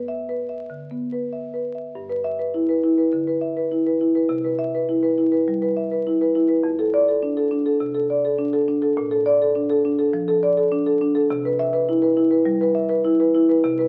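Set in a straight 4/4 at 103 BPM, this short passage cut from a longer contemporary classical piece for solo marimba has a playful, warm mood in G major, tuned to A4 = 437 Hz. The marimba, played with medium mallets, carries everything alone across its span from F2 to E5, its rosewood bars giving a woody tone that sits up front. After a brief opening phrase, a new section begins at 2.0 s and runs to the close at 13.9 s. The harmony moves from G6 through Cmaj7, F6 and Bbmaj7 before returning to Cmaj7, adding bright, colourful chords to the line. The sound is that of a very old 78 rpm record, with vinyl crackle and a moderate stone-room reverb lending the instrument an antique, echoing glow.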